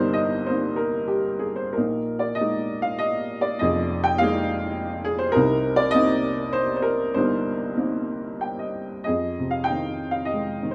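A dark, woody upright piano sits up front in this brooding classical fragment cut from a longer piece, playing lyrically in 3/4 at 92-105 BPM with rubato in C minor over moody Cm7 and Bb7sus4 harmonies, its boxy, mellow tone set in moderate studio reverb, before a brief fill at 8.1 s leads into a new section on Fm7 at 9.1 s.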